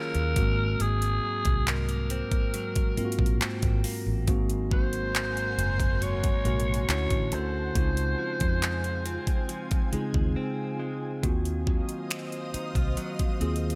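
A slow, moody contemporary R&B excerpt at 69 BPM carries a sense of longing, built on a mellow tine electric piano, a clean direct-recorded electric guitar playing arpeggios with subtle chorus, a dark, round, foam-muted fingered bass, and an up-front trap kit of knocking kick, metallic hi-hat, finger snaps and handclaps. A raspy, growling alto saxophone with vibrato and delay sings the melody until 9.9 seconds, while an ethereal, airy pad with ensemble chorus and built-in reverb enters at 4.9 seconds to hold sustained chords. The harmony moves from Ab9 through Dmaj7 and Dbmaj7, and after a brief break a new section opens on Ebm69 at 11.2 seconds, all set in a digital ambience.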